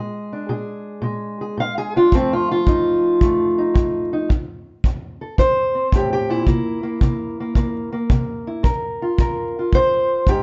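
A fingerpicked steel-string acoustic guitar with a dark, woody, boxy parlour tone and old strings carries the melody up front in plate reverb through this laid-back, swaggering acoustic country blues excerpt at 110 BPM in a swung 4/4, joined at 2.1 seconds by a punchy, up-front kick drum played with brushes in a moderate studio room as the chords move from Bb7 through F7 and C7 to Bb5.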